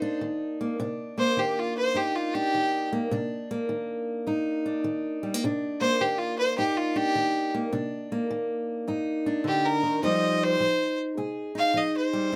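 A fingerpicked steel-string guitar, bright with fresh strings and the odd finger squeak, sits up front beside a clear bowed fiddle in this brooding, smoky acoustic country blues with a swung 4/4 lilt. From 0.8 seconds the single fiddler takes a solo with a biting, earthy tone, light vibrato and an airy bow, over the guitar's Cm9 harmony shifting to Fm9 at 10.0 seconds. Close, detailed microphones and light reverb frame this short fragment of a longer piece.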